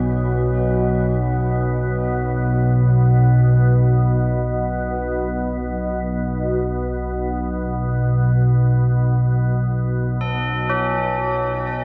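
A dreamy mix soaked in a huge ambient reverb opens this dark ambient drone, cut from a longer piece and moving in free time with an unsettling, dark mood. Up front, a calm organ-like drone holds low around a Bsus2 chord, its sine-based tone thickened by ensemble chorus, a phaser and its own built-in reverb, with a slow attack and long release. Above it, tubular bells play solemn arpeggios from C#4 to A4, their metallic, ringing strike from a rawhide hammer caught close and dry, then carried off by tape echo and shimmer reverb. The bells sit well below the drone in level, sounding like solemn tolling over the hum. At 11.7 seconds a bright, detuned sawtooth pad with a filter swell and chorus appears for a moment, barely audible, as the recording breaks off.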